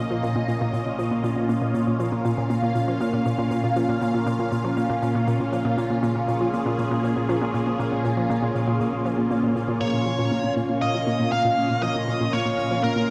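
Hypnotic and expansive, this ambient, sequencer-driven space music moves at 119 BPM in a straight 4/4, resting on a single Bb minor chord throughout this short cut from a longer piece. A lush, thick unison pad sits up front, holding sustained chords built from detuned saw and square waves with a sub octave, its slow attack and long release coloured by chorus, phaser and shimmer reverb. Beneath it, an analog pluck repeats a low riff with a round, nasal tone and a fast attack, carried by chorus, shimmer reverb and analog delay. In the background, a pulsing, tempo-synced gated texture fades in across the whole passage, its detuned triangle tone glinting high in the register. At 9.8 seconds a bluesy, overdriven electric lead guitar enters with a picked, distorted melody, pushed forward and trailed by analog delay and shimmer reverb. A wet plate reverb with a 2.9-second decay surrounds the mix, giving it a spacious, floating quality.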